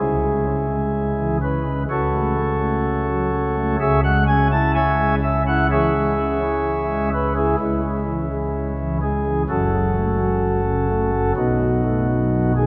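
Classical chorale-style music for solo pipe organ on soft, warm flute stops, dark and solemn in C# minor at 63 BPM in a rubato 4/4, its romantic voicing spanning F#1 to A5 and sitting up front in a wet cathedral reverb with a long 5.3-second decay, moving from C#m through F#m/C# and back before turning to F#m and a closing B7 at 11.4 seconds in this excerpt cut from a longer piece.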